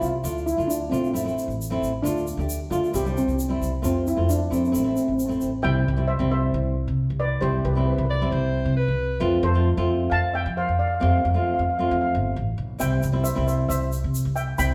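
Calypso at 134 BPM in a festive, sunny mood, this excerpt cut from a longer piece sets a shimmering, mellow steel pan melody up front over fingerpicked, full-bodied nylon-string guitar with a touch of finger squeak and woody pizzicato upright bass, with a grainy egg shaker through 5.5 seconds and again from 12.8 seconds, while a clear alto saxophone with vibrato adds a brief second line at 8.1 seconds, all played live in one room with a wet large-studio reverb.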